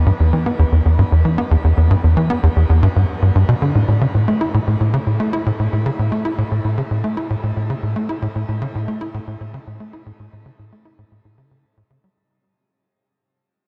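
A tight, nasal sequencer bass of punchy, filter-plucked sawtooth and square-wave notes plays alone from 0.0 to 12.1 s in this hypnotic, mysterious ambient piece at 114 BPM in E dorian, its up-front line colored by subtle chorus and analog delay and set in a long shimmer reverb within a dark production, fading out from 3.7 s onward as a cut from a longer work.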